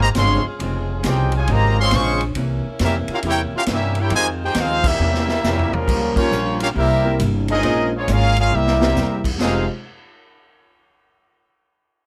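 A swung 4/4 pulse drives this dramatic big band excerpt, cut from a longer piece, with a woody, up-front pizzicato upright bass and a vintage drum kit with a punchy kick, medium-tuned snare, toms, cymbals and a warm, rolled-off top. A bright, close-miked trumpet section carries the melody with light vibrato, while a tight trombone section plays a second line in the background. A dark, clean, compressed hollow-body electric guitar picks out accompaniment beneath them, and a very quiet saxophone section holds sustained chords with vibrato until 5.9 seconds. The band hits accents at 4.8 and 6.1 seconds, and a warm grand piano enters at 6.2 seconds to add accompaniment in the background, while the drums play fills starting at 5.0 and 8.5 seconds. The sound is close and detailed, set in light reverb.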